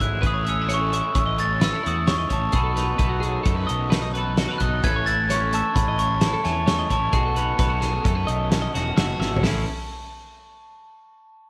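Opening at once on a bell-like glockenspiel melody over clean, warm twelve-string arpeggios, a twangy guitar in the background, a growly fuzz bass and a loose, up-front indie drum kit with a fat snare and punchy kick, with a raw, double-tracked overdriven guitar riff joining at 0.2 seconds, this bright, intricate math rock and midwest emo fragment in A lydian moves at 130 BPM in 5/4 through Amaj7, B7 and B9sus4 chords in a small echoing room, its lossy sound marked by compression artefacts, until a drum fill at 9.2 seconds.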